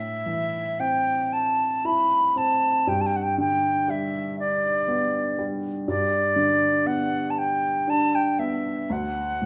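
A recital hall's moderate reverb surrounds two close, up-front instruments in this short cut from a longer Celtic slow air. A bright baroque flute carries the melody in a high register, its wooden, airy voice heard with a straight tone and crisp attack. Beneath it, a felt-muted upright piano plays the accompaniment across a low-to-middle range, soft and mellow, with the intimate rustle of its action audible. The pace is very slow, around 39 BPM counted in dotted quarters, in a loose, rubato 6/8, with the tuning set to A4 = 442 Hz. Harmonies move from A minor to G at 2.9 seconds and reach D at 8.9 seconds, giving the passage a pastoral, wistful mood across its 9.5 seconds.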